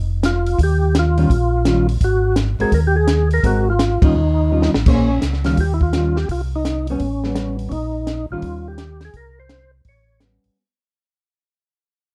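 Soul jazz organ trio at a swinging 168 BPM in 4/4, bluesy and soulful, with a mellow, round tonewheel organ bass line clicking through a slow rotary speaker beneath a compact cocktail drum kit with a punchy kick and high-tuned snare. Up front, a percussive tonewheel organ carries the melody with lightly overdriven second-harmonic percussion, chorus vibrato and plate reverb, while a clean, fingered hollow-body jazz guitar comps from 1.2 seconds over Eb9 and Ab9 changes. A band accent at 4.0 seconds and a drum fill lead into a second section that fades out from 4.9 seconds, all within a dark, warm production.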